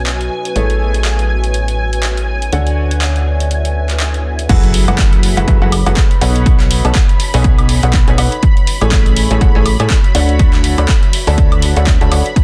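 Opening on a clear, worn grand piano riff with 12-bit sampler grit and digital delay over a plucky, funky analog bass, silky ring-modulated string pad chords with ensemble chorus and a blurred granular cloud pad in the background, this soulful, energetic piano house clip at 122 BPM swings its 16ths with the piano, bass and both pads pumping to the sidechain, as an overdriven analog drum machine of hi-hat, handclaps, woodblock and crash cymbal joins at 0.1 s and the drop lands at 4.5 s with an up-front overdriven kick and a very quiet impact, cycling through B9, Amaj7, Dmaj7 and F#m11 in a dry, dense, heavily limited master.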